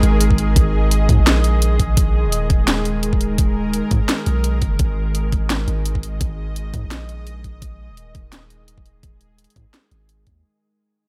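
The rhythm is a half-time drum and bass groove at 170 BPM in 4/4, with a light 55% swing on the sixteenths, cut from a longer piece and tuned to A4 = 442 Hz. A layered kit of cracking snare and bright hi-hats plays from the start, and an electronic kick with a knocking, overdriven punch joins it at 0.3 seconds, both re-recorded in a small room for a gritty edge. Underneath, a long sustained 808-style bass sits up front with a deep, mellow sine tone, a fast attack and a decaying tail, reaching down to D#1. Above it, a bowed-like, string-style drone holds sustained chords spanning D#3 to D#5 with a nasal, sawtooth bite, a noise layer, vibrato and a slow attack, its built-in reverb and sidechain pumping giving it a breathing, uneasy shimmer. Set in light reverb and fading out across its full length of about 10 seconds, the track feels cinematic and tense.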